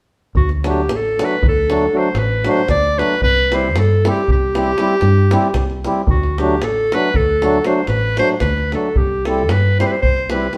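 The davul starts first, a tight, acoustic drum sound, with the clarinet and fingered electric bass joining almost at once and the accordion following at 0.6 seconds. This short cut from a longer piece is festive, wild Balkan wedding-band folk in D mixolydian, driving along at 230 BPM in eighths in a straight 11/8. The clarinet carries the melody up front in a classical-style solo voice, ranging from F#4 to D5 with a warm tone. Beneath it, the accordion supplies reedy, round, close-miked accompaniment, while the electric bass sounds direct and amped with a foam-muted thump. The harmony swings between D and C, and the band plays live together in a stone room whose wet reverb, lasting about 1.1 seconds, gives the whole performance a lively glow.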